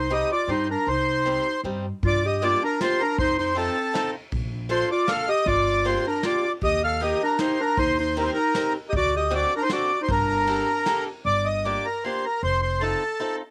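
A bittersweet, nostalgic musette waltz in G minor at 156 BPM in 3/4 opens with a reedy, up-front accordion melody over a clear jazz-style clarinet second line with light vibrato, a woody, growly pizzicato upright bass and a boxy, picked swing guitar. Soft brushes on a kit with dark cymbals and a tight kick join at 2.0 s, and both the drums and the clarinet drop out at 11.0 s. The accordion and guitar then carry the cut-off passage to its end, with the bass falling away just before. The accordion, clarinet, guitar and drums carry a cassette-tape color, all within a home cassette recording with light reverb.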